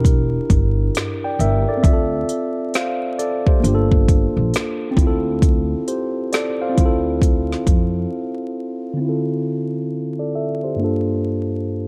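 Vinyl crackle and light reverb lend a hazy, melancholic air to this slow lo-fi hip hop cut in D minor at 67 BPM, where a mellow, low-pass-filtered tine electric piano sits up front over thumpy pizzicato upright bass and a layered deep house kit of deep kick, woody snare, smooth hi-hat and finger snaps, until a break at 8.1 seconds leaves the electric piano alone for a filter sweep from 9.0 seconds.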